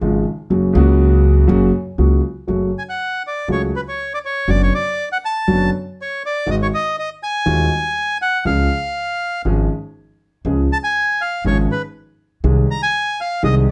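A rubato tango rhythm in 4/4 at 121 BPM sets a tense, sultry mood in F# harmonic minor. From the start, a concert grand piano plays the accompaniment up front, with deep bass, long sustain and a slightly boxy tone. A pizzicato upright bass on gut strings adds a woody, dark, thumpy low end beneath it. At 2.8 seconds a bandoneon enters with the melody, reedy and full, close-miked and dry. The harmony moves from C# and F# to F#m, through Bm over F# and G#7, back to C#, and ends on G# over B#. Light reverb surrounds this passage, which is cut from a longer piece.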